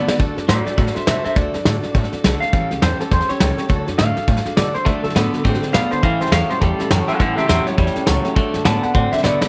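A light studio reverb gives this cut from a longer rockabilly piece a retro, rowdy feel, with a swung eighth-note bounce. An electric guitar through a small old amp carries the lead as a clean solo across the whole stretch, its slightly broken-up, twangy tone trailed by tape echo. Beneath it, a picked jumbo steel-string acoustic guitar with fresh strings fills in the harmony with a full-bodied sound and audible finger squeak. A woody upright bass played pizzicato on gut strings gives a thumpy low end, while the vintage brush kit sits up front, dark and smooth with a punchy kick, opening and closing with drum fills at 0.0 and 9.2 seconds. A second electric guitar, bright and compressed with a subtle chorus, flickers in at the start and returns from 4.9 seconds with a riff as the harmony moves between D and A7.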